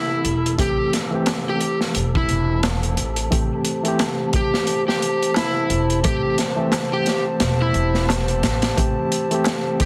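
Swung sixteenths at 88 BPM in 4/4 drive this smoky, brooding trip hop excerpt in A minor over a single Am7 chord. A gritty, saturated breakbeat kit with a punchy kick and a woody pizzicato upright bass enter at 0.2 seconds beneath an overdriven slide guitar melody soaked in dub echo and a reedy, barky electric piano with fast tremolo. A nasal, chorused analog pad arrives at 0.6 seconds, a crisp metal-shell darbuka sits in the background from 1.3 seconds, and a very quiet, breathy wind-like noise texture hovers throughout, the whole mix pressed into a heavily compressed radio sound with light reverb.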